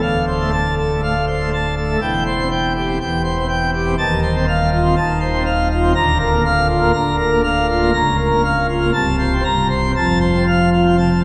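A solo pipe organ on full plenum with brilliant mixtures and romantic voicing sits up front in this jubilant, majestic classical toccata in F major at 121 BPM in 4/4, ranging from C1 to Bb5 as its harmony moves from Dm7 through C/E, F7/Eb and Bb/D toward a settling F chord at 10.0 seconds, all bathed in a wet church reverb heard from further back in the room, in an 11.2-second cut from a longer piece.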